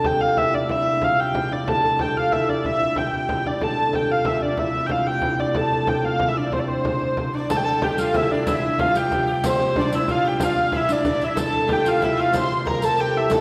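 A reverberant church-hall sound frames this festive, ancient-feeling medieval dance in C major at 124 BPM in 6/8, where a nasal, woody, wheel-bowed hurdy-gurdy carries the melody up front over a mellow, thumb-plucked concert harp second line, a dark viola da gamba drone with light vibrato, and a deep frame drum, before a shimmering, buzzing sitar joins in the background at 7.3 seconds and a riq with bright jingles follows at 7.5 seconds in this short cut from a longer piece.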